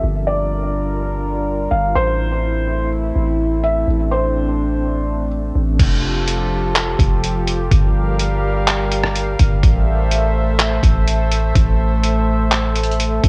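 A dry home recording on cassette, this blissful, dreamy excerpt of atmospheric cloud-rap hip hop moves at 125 BPM in a half-time 4/4 feel. A soft, felt-muted upright piano with audible action noise carries the melody through tape echo until 5.3 seconds, over a warbling, detuned tape-like pad of nostalgic sustained chords with chorus and sidechain pumping, and a deep, sine-toned 808-style bass whose long notes decay. At 5.8 seconds a muffled, pitched-down sampler-style trip hop kit enters with a thumpy kick, rim clicks, handclaps, hi-hat and crash, as the chords move from Gm7 and Am to Fadd9.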